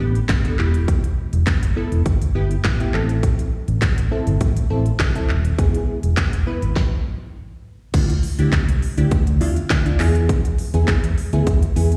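This driving, energetic dance-pop excerpt sets a dark, round, foam-muted electric bass under detuned, digital wavetable chord stabs with a filter pluck and moving notch, both pumping with sidechain and the stabs carrying a slapback echo. A punchy, tape-warm electronic kit enters at 0.2 seconds with fat snare, crisp hats, handclaps and crash, sitting up front beside the bass, and the band breaks for a stop from 6.8 to 7.9 seconds before moving into a new section. The sound is that of a live gig heard through the venue's PA, with a recital hall's reverb around it.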